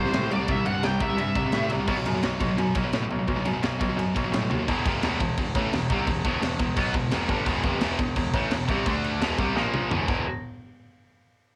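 A picked, high-gain lead guitar opens this dark, heavy metal fragment over a double-tracked, up-front distorted guitar riff and a brilliant concert grand piano carrying deep, short-sustained bass, with a tight acoustic drum kit of bright cymbals, high-tuned snare and polished, airy room sound joining at 0.1 seconds, the lead falling away at 1.7 seconds, and a drum fill from 9.6 seconds, in a dry home cassette recording whose tape coloring touches both guitars.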